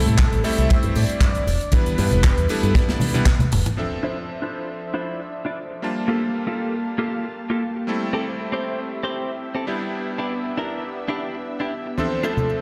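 A bold, dark sawtooth unison lead with delay opens this sleek, groovy nu-disco excerpt at 117 BPM in D minor, over a cutting, clangy electric grand piano and an envelope-filtered fingered bass that both pump against an up-front tight kick, joined by a dry, polished funk kit of handclaps, hi-hat, snare and toms plus close, soft-handed cabasa and congas, until a drum fill from 2.8 s gives way at 3.8 s to a lush, detuned, chorused pad, followed at 4.0 s by a compressed, clean direct electric guitar riff with a filter sweep, as the lead and hand percussion return at 12.0 s.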